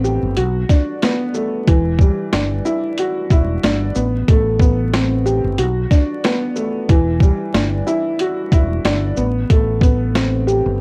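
A swung 92 BPM boom-bap groove in 4/4 drives this tough, dark hip-hop excerpt in E minor, its compressed, pitched-down drum kit punching up front with a thumpy kick, high-tuned snare, hi-hat and shaker, all given a gritty cassette tape character. A round, punchy fretless electric bass sits low beneath a warm, intimate, worn, woody upright piano that sounds slightly detuned and boxy, with audible action noise, short sustain and filtered, tape-coloured plate reverb as it moves through Bm7, Em9 and Am9. Vinyl crackle and a home-cassette sound lend the whole excerpt a lo-fi feel.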